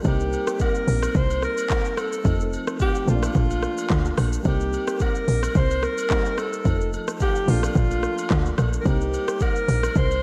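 Afrobeats groove at 109 BPM in C dorian with a sultry, smooth mood, where a breathy, whispered alto saxophone with tape echo carries the melody up front over a punchy, woody log drum bass, an afro-pop kit of deep kick, smooth hats, handclaps, rim click and shaker with vintage 12-bit sampler grit, soft round electric-piano-like synth keys with chorus cycling Cm7, F7 and Bbmaj7, and distant agogo bells and woodblock, all washed in a dreamy, lush hall reverb.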